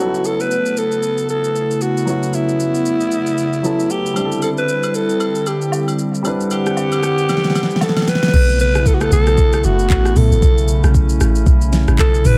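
A breathy, raspy alto saxophone carries a soulful late-night amapiano melody at 115 BPM in B minor with dub echo, over a warm concert grand piano that drops out at 8.4 seconds, a hollow flute-like pad pumping with sidechain, a smooth R&B drum kit whose fill leads into a drop at 8.3 seconds where a deep, round log drum bass arrives up front, and agogo bells and woodblock echoing faintly in the background from 4.2 to 8.1 seconds.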